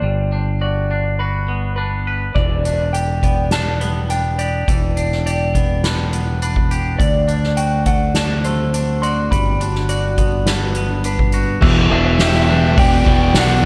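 A growling, overdriven fingered bass sits up front in this melancholic, cinematic post-rock excerpt in E minor at 103 BPM, beneath arpeggios from a lo-fi, slightly broken-up guitar through a small old amp and a twangy, scooped clean guitar, both bathed in spring reverb and analog delay. A delayed guitar melody begins at 2.3 seconds, and a soft-mallet drum kit with a boomy kick and dark cymbals enters just after at 2.4 seconds. A deep, detuned ambient pad with chorus drifts in at 8.4 seconds, and at 11.6 seconds a sludgy overdriven guitar and a bright, thick fuzz guitar join in the background with a riff.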